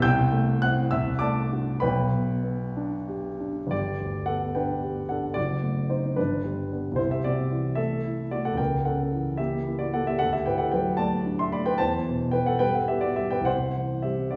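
A dark, mellow grand piano with short sustain sits up front in this passionate, hopeful romantic character piece for solo piano in G major, flowing in a rubato 6/8 at about 62-76 BPM. Its opening gives way at 3.7 s to a longer second section whose harmonies pass through diminished chords toward D, Em and C, all bathed in a wet recital hall reverb.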